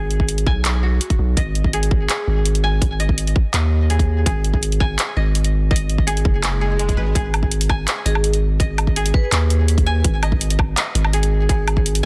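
Dense, heavily limited and touched with light reverb, this dark, tense half-time drum and bass passage is cut from a longer piece and opens on a dry, woody koto playing filtered arpeggios through a digital delay. A deep, sine-toned 808-style bass sustains underneath, while an up-front layered kit of tight electronic kick, bright hi-hats, handclaps and woodblock carries the half-time groove, with a faint electronic swell appearing in the background at 6.6 seconds. At 8.1 seconds a metallic, ringing vibraphone struck with hard mallets adds a brief background melody, roughened by 12-bit sampler grit and trailed by dub echo.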